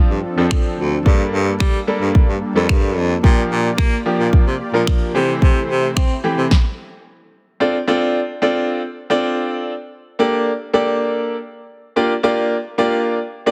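A dense, heavily limited modern mix with light reverb and studio ambience frames this upbeat, summery dance-pop excerpt in F major at 110 BPM, where a clear, up-front concert grand piano with sidechain pumping carries the chords alongside a very quiet, detuned supersaw pad. A breathy, whispered baritone saxophone with vibrato plays the bass line, also pumping, while a punchy house drum kit of kick, snare and finger snaps drives the groove, with soft clipping on the snare. The supersaw and saxophone drop out at 6.5 seconds and the drums just after, in a stop that lasts until 7.6 seconds, when the piano carries on alone until 13.5 seconds.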